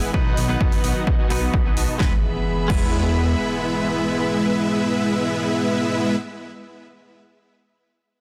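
A straight 4/4 pulse drives this anthemic, euphoric festival progressive house excerpt: a punchy, overdriven electronic kick sits up front beside a house drum kit of cracking snare, bright hi-hats and crash cymbal, both dropping out at 2.8 s. Beneath them, a fat, nasal analog bass rides a filter sweep, while a huge, detuned supersaw riff, pumping and tape-coloured with low-pass filtering and digital delay, dominates above a twangy clean electric guitar with its own delay and an earthy chamber string section holding sustained chords in the background. A sub drop and impact arrive at 2.1 s, all within a dense, heavily limited modern master.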